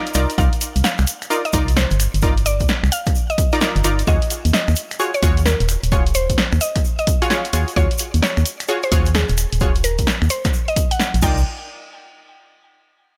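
UK garage in a soulful, moody two-step vein with a swung groove, this excerpt from a longer piece opens on a drop where a woody, mallet-like synth pluck carries the melody over punchy, detuned chord stabs, both treated with chorus and delay, while a hollow, dark, organ-like FM bass sits up front beside a punchy analog drum machine of snare, hi-hat, finger snaps and crash, an electronic kick drum entering at 0.4 seconds, and a grainy tube shaker in the background, all shifting between Cm11 and Ebm11 in a dry, close mix.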